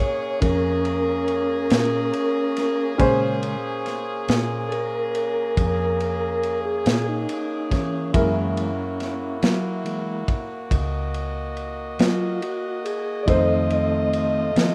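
A rough home-demo sound with studio ambience frames this smoky, soulful slow blues in 12/8 at 47 BPM in Bb minor, a brief cut from a longer piece moving from Bbm7 to Gb7 and F7. Up front, a mellow, flute-like tonewheel organ with a slow rotary speaker and vibrato takes the solo throughout, over sustained chords from a brilliant, tight horn section, while a woody upright piano accompanies in the background. A round, foam-muted vintage electric bass anchors the low end, and a crunchy, saturated breakbeat kit with dark cymbals, a tight kick and a medium-tuned snare enters at 0.4 seconds.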